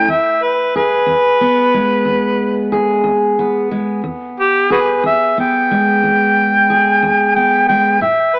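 Acoustic country blues in a rollicking, gritty, straight 12/8 feel, this short fragment from a longer piece pairs a mellow harmonica carrying the melody with a fingerpicked steel-string acoustic guitar, both up front. The harmonica plays in a jazz style with light vibrato, scooped notes, tongue slaps and a soft attack, while the jumbo guitar's old strings give a woody, full-bodied accompaniment with a cassette-tape tint. Moderate spring reverb and a home-cassette, AM-radio character frame the duo throughout its 8.4 seconds.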